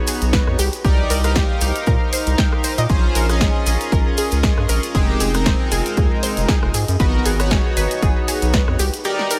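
Deep house at 117 BPM with a swung 16th feel, this smooth excerpt sets glossy, retro chorused polysynth stabs and bright, detuned analog pluck arpeggios, both with digital delay and sidechain pumping, over a breathy pad in the background, a round, deep analog bass that enters at 0.2 s, a dry, punchy electronic kick up front, a punchy analog drum machine playing hi-hat, rim click and snare, and a grainy, distant tube shaker, all moving through Abm7, Cm7, Bbm7 and Fm7 in light reverb.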